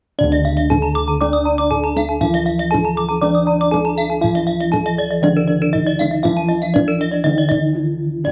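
This short passage from a longer Balinese gamelan piece opens at 0.2 s with nearly the full ensemble sounding together, ceremonial and brilliant in mood over a steady, straight four-beat pulse. A bronze metallophone carries the melody, struck with padded disc mallets for a mellow, soft tone, and a slapback echo trails each note. Beneath it, a lower metallophone played with a wooden mallet supplies accompaniment, while bossed gongs anchor the bass with a round, beating resonance. Two higher metallophones played with horn mallets add bright, airy arpeggios, the second joining at 0.3 s, both treated with slapback echo, and their paired tuning gives the whole upper register a shimmering quality. A kendang keeps time with soft hands and a tight, close sound. The second arpeggio part stops at 7.5 s, opening a short break that runs to the end at 8.3 s, all captured outdoors with little reverb.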